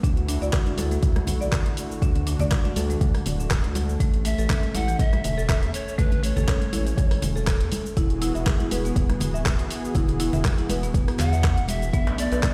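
Hypnotic, warm afro house at 121 BPM with a light swing, this excerpt rides an up-front, overdriven electronic kick and a gritty deep house kit of cabasa, handclaps, hi-hat and rim click, with background congas entering at 0.5 seconds, a round, wave-folded analog bass and a smooth, detuned sawtooth pad pumping beneath woody, buzzing marimba arpeggios echoed by digital delay, while a breathy, reedy pan flute with vibrato and sampler grit carries the melody in two phrases, at 4.3 and 11.2 seconds, a distant clay darbuka surfaces briefly near the end, and stone-room reverb gives it the air of a big sound system in a bare room.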